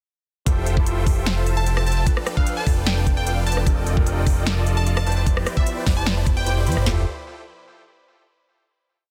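A half-time 4/4 groove at 150 BPM drives this bright, playful future bass piece in F lydian, where a trap kit's knocking kick, sharp snare and toms sit up front beside an overdriven big-room kit of punchy snare, rim and crisp hats with hat rolls, while a fat, detuned analog bass holds long gliding notes under huge, lush supersaw chords in dotted rhythms, a barky, gritty overdriven tine electric piano with syncopated pushes, and a glassy, crystalline wavetable pluck that enters at 1.6 seconds with short answering phrases, the bass, supersaws, piano and pluck all pumping through a drop of Fmaj9, G9/F, Ebmaj9#11/F and Cmaj9/F before a final Fmaj9 chord at 6.9 seconds in a dense, heavily limited digital mix.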